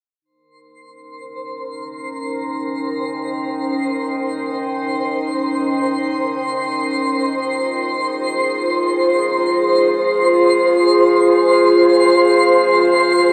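A warbly, tape-like pad stands out most, holding sustained chords from 1.4 seconds with a detuned, nostalgic lo-fi character, its dark square and triangle tones carrying a sub octave and softened by slow attacks, long releases, chorus and built-in reverb. This is a free-time ambient passage cut from a longer piece, with a warm, luminous mood. A twinkling granular texture enters at 1.1 seconds in a higher register, its FM tones sparkling with an octave-up shimmer, sustained and reverberant. Both parts fade in from the start and sit up front in the mix. The harmony moves from Eb7 to Fm at 7.2 seconds, all bathed in a wet shimmer reverb with a long 8.2-second decay.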